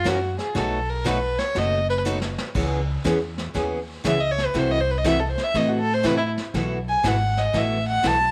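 A dark, woody fiddle carries the melody up front, bowed by one player with light vibrato as it solos through this cheerful, swinging western swing excerpt at 120 BPM in 4/4. Beneath it, a bright, full-bodied picked steel-string acoustic guitar on old strings supplies the accompaniment through changes that move from F#7 and B7 to C#m7, Am6/C and a closing B7sus4. The upright bass is plucked and sits up front with a growly, thumpy tone. A vintage brush drum kit enters at 0.1 seconds, sounding distant and roomy with a tight kick and a rolled-off top, and adds a fill between 2.1 and 2.6 seconds. Light studio reverb gives the piece a gentle sense of space.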